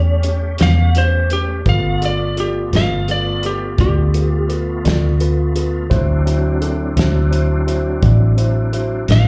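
Rollicking yet laid-back, this slow blues in 12/8 at 56 BPM moves through A7, G7 and D7, caught as a live club gig heard through the venue's PA with small-room ambience and club reverb. A lightly driven, slightly broken-up lead guitar carries the melody with slapback echo over a dark, boxy grand piano that shares the same echo, while a reedy tonewheel organ holds sustained chords with key click, chorus vibrato and a slow rotary speaker. Underneath, a round, foam-muted fingered electric bass sits up front, and a soul drum kit with a fat snare and tight kick enters at 0.2 s.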